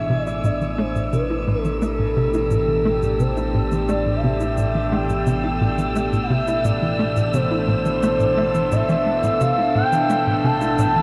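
A smooth, expressive synth lead carries the melody across the whole 11 seconds, its sawtooth-and-triangle tone softened by vibrato, a lush chorus and delay in this mysterious, expansive slice of sequencer-driven ambient space music. Beneath it, a tight, punchy sequencer bass drives a detuned riff with a filter-plucked, decaying attack, coloured by ensemble chorus and delay. An evolving wavetable pad sits up front, morphing through mellow sustained chords on Am7 with slow attacks and long releases. Low in the mix, a warbling, vintage analog drone holds a single low note with pulse-width modulation, while an airy, breathy, wind-like noise texture hovers high above in its own reverb. Dry, overdriven electronic shaker and congas sit in the background, entering at 0.3 seconds and fading in gradually, and the whole passage, cut from a longer piece, is bathed in a wet shimmer reverb with the grain of cassette tape.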